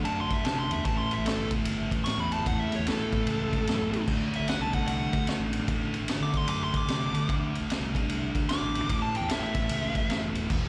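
Swung eighths in 4/4 drive this gritty, raunchy blues rock and southern rock power-trio excerpt, cut from a longer piece. A dark, smooth overdriven lead guitar with slapback echo solos high over a thick, double-tracked fuzz guitar riff and a growly, punchy fuzz bass, while an up-front vintage kit with dark cymbals, a high-tuned snare and a punchy kick hits crash, ride, snare and kick. The changes move from D7 to A7 and back before landing on A at 8.9 seconds, and the whole trio sounds like a live gig heard through the venue's PA in a recital-hall space.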